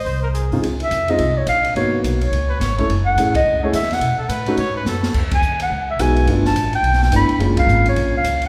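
A breathy, up-front clarinet carries the melody with light vibrato and scooped notes in this playful, swinging small-group jazz excerpt at 213 BPM, while a clear trumpet adds a quieter second line until 5.2 seconds. Pizzicato upright bass with a woody tone, natural-sounding upright piano chords and a drum kit with dark cymbals and a boomy kick drive the swing, punctuated by band accents and a drum fill at 4.9 seconds. The whole group sits in the lush reverb of a recital hall.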